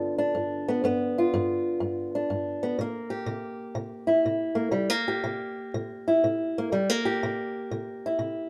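Blues fragment cut from a longer piece, laid-back yet rollicking, moving at 122 BPM in 4/4 with a swung eighth-note feel and tuned slightly below standard pitch at A4 = 437 Hz. A fingerpicked old ladder-braced acoustic guitar carries the whole 8.5 seconds alone, ranging from G2 to G4. Its tone is dark, woody and boxy, with the character of old strings, and it sits up front in the sound. The harmony rests on G7 before shifting to C7 at 2.8 seconds. Light reverb gives the performance the feel of players gathered live in a single room.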